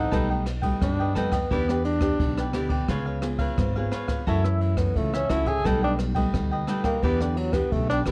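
A breathy, mellow tenor saxophone solos up front with vibrato and scooped notes over crisp picked cavaquinho, fingerpicked nylon-string guitar, woody pizzicato upright bass with transformer saturation and a brushed jazz kit with dark cymbals and a boomy kick in this lively, yearning samba and choro excerpt, dry and coloured by worn, warbling cassette tape.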